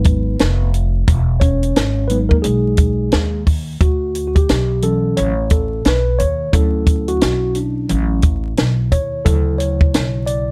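A mellow, clean tine electric piano takes the lead from the first moment over a woody, pizzicato upright bass and a dry, compact cocktail drum kit with a high-tuned snare and tight kick, all three up front in this relaxed, smooth jazz-hop excerpt at 88 BPM in D major, its 16ths gently swung as the harmony shifts from Emaj9 to Dmaj9 at 3.8 seconds, wrapped in light reverb and a bed of vinyl crackle.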